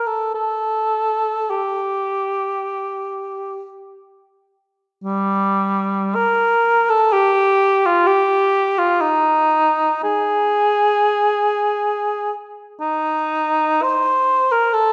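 A mournful, yearning mood hangs over this short classical fragment, cut from a longer piece for unaccompanied cor anglais. The solo instrument plays alone from start to finish, its mellow voice placed up front and coloured by vibrato. The line moves with free, expressive rubato over a loose 4/4 metre, ranging from G3 up to C5. A recital hall's generous reverb, lasting about 1.8 seconds, surrounds the playing with a lingering, resonant space. The opening phrase, running to 5.0 seconds, returns in a second statement that carries the music to its close at 14.9 seconds.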